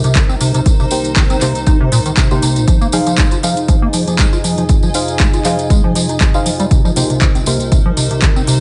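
Swung sixteenths in 4/4 drive this raw acid house excerpt, where a punchy, up-front kick from 0.2 s, an overdriven analog drum machine's metallic hats and handclaps, and a jingly, close tambourine push a squelchy, resonant square-wave acid bass with filter sweeps and digital delay, while a warbling, lo-fi, tape-like pad and a blurred granular cloud pad pump with sidechain beneath sustained Cm7 and Fm7 chords, and a soft, nasal chord stab with chorus and delay enters at 0.9 s.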